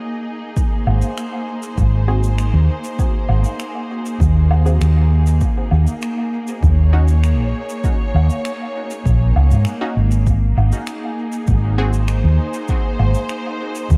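An echo-heavy, spacious studio mix opens this hazy ambient dub fragment at 99 BPM in Ab major, where a smooth bowed string section with light vibrato sustains chords alone until 0.6 seconds. A punchy, overdriven electronic kick then enters with cabasa, woodblock and finger snaps bathed in natural hall tone and dub echo, and a round, dark hollow-body fingered bass joins up front just after. Between 2.1 and 11.9 seconds, a muted, detuned sawtooth chord stab with a fast pluck adds chorus and its own dub echo over chords moving from Ab7 to Ebm7 and back to Ab.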